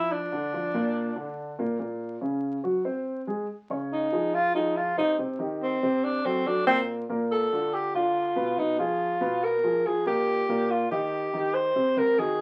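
This fragment, cut from a longer piece, sounds like a very old 78 rpm record, with vinyl crackle over a wet studio ambience. It is a danceable, lively jazz tune in Bb major at 142 BPM in a straight 4/4. A breathy tenor saxophone carries the melody as a soloist, mellow and whispered, with vibrato, subtone, soft attacks and scooped notes, sounding both distant and roomy yet intimate and up front. It plays briefly at the opening, drops out at 1.4 seconds, and returns at 3.9 seconds to stay until the end. Underneath, a dark baby grand piano accompanies throughout, its natural, up-front tone carrying audible action noise. The harmony moves through colourful changes such as Dbmaj7, D7b13 and Abm69 before settling on Eb6.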